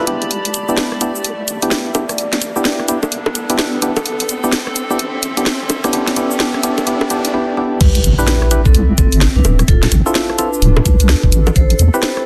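A dense, heavily limited mix with light digital ambience and lossy artefacts frames this moody, late-night two-step UK garage excerpt at 128 BPM in D dorian, where a deep, wobbling bass and hollow, percussive organ stabs with dub echo sit up front over a warbling, nostalgic lo-fi pad with phaser and sidechain pumping, a swung garage kit with cracking snare, bongos and shaker, and a background riser that builds until the drop at 7.8 s brings an impact, a knocking overdriven electronic kick and a metallic, ringing vibraphone melody played with medium mallets.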